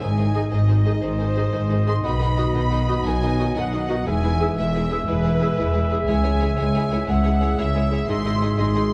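Adventurous and soaring, this cinematic orchestral passage moves at 119 BPM in 12/8. A lush, vibrato-rich violin section carries the melody, while a distant, hollow flute adds a second line and a second violin line sits in the background. Smooth violas, sustained French horn chords and ringing fingerpicked harp arpeggios fill the middle. A clear trumpet punctuates with stabs, an up-front bowed double bass section and cellos anchor the low end, and a vintage-toned oboe and a soft clarinet add supporting lines from 0.4 s, all moving through G#, B, E and C#m in a dark concert hall ambience.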